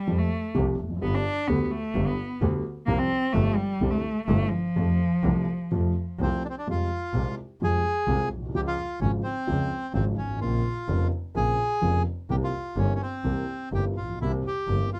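Melancholic and passionate, this tango moves at 128 BPM in 4/4 with a rubato feel, set in F major before darkening into F harmonic minor from 6.7 seconds. A bowed cello opens up front as the second line, its nasal, boxy tone shaped with vibrato and portamento, and the event list marks a cello solo from 0.0 to 6.7 seconds even as a dark, mellow concert grand piano and a bowed double bass join at 0.1 seconds. The piano's accompaniment has an intimate quality, with deep bass and audible action noise, while the double bass sounds earthy and distant with a light vibrato. At 6.2 seconds the cello gives way to the bandoneon, which carries the melody up front in a reedy, smooth voice. The harmony shifts from Fsus2 through Csus4 and Cadd9 toward Fmadd9, Db and Bbmadd9 before resting on C7, captured by close, detailed microphones with little reverb in this fragment cut from a longer piece.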